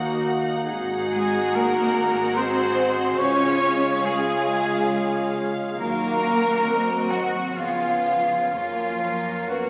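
A clear French horn section holds sustained chords through this lyrical, rubato classical passage in 3/4 at roughly 61-72 BPM, while a bowed violin section carries the melody over a smooth, even viola section in the background and a focused double bass section. At 1.1 s a pure-toned flute, a clear oboe, an up-front violin section and a lush cello section join with second lines and bass. Very quiet, dry timpani enter at 8.5 s and a dark bassoon at 9.5 s, all heard through a reverberant scoring-stage space and the crackle of a very old 78 rpm record.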